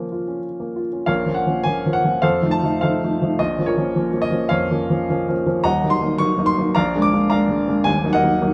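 Bittersweet and brooding, this romantic classical character piece for solo piano unfolds in Bb minor at 106 BPM in 4/4 with a rubato feel, its natural, up-front baby grand spanning the deep bass to the upper treble as harmonies move from Bbm through F7 toward Ebm, all set in a moderate stone-room reverb within this short fragment of a longer work.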